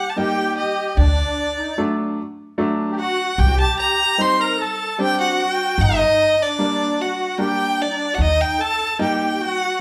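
A straight, unhurried 3/4 at 75 BPM carries this bittersweet yet festive klezmer excerpt in G harmonic minor, tuned slightly low to A4 = 439 Hz. A single bowed violin takes the melody, rich and smooth with even vibrato, sitting up front. Beneath it a musette accordion plays a second line, its reedy, shimmering tuning giving a dark undertone. A bright upright piano joins at 0.2 s with brilliant, short-sustained accompaniment, its action noise audible in an intimate, polished sound. The pizzicato upright bass enters at 1.0 s on gut strings, thumpy and woody, and drops out at 8.4 s, while the harmony moves from Eb through D, C minor and G minor back to Eb, all played live in one room with a wet, large studio reverb.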